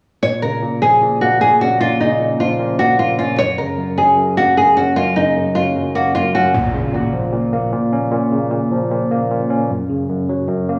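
Bathed in a moderate echo-chamber reverb, this short, melancholic and dark half-time hip hop fragment sets an up-front, full-bodied fingerpicked nylon-string guitar melody, softened by a low-pass filter and analog delay, over a clean, filtered tine electric piano heard as if through its built-in speakers, until the guitar drops out at 6.5 s and an electronic impact hits alongside the lingering piano.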